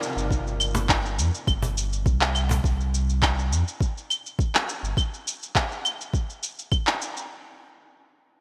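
A deep, round sub bass sits up front, moving between G1 and F2 until 4.9 s, beneath a soft electronic kick and an up-front bed of electronic shaker, claves and handclaps carrying gated reverb in this short cut from a longer organic downtempo piece in C minor at 103 BPM. A snappy acoustic cajon with snares sits in the background from 0.7 to 2.6 s, while a very quiet electronic downlifter sounds from the start until 2.6 s. The hypnotic, mystical mood is framed by a lush hall reverb and bright 1980s-style digital production.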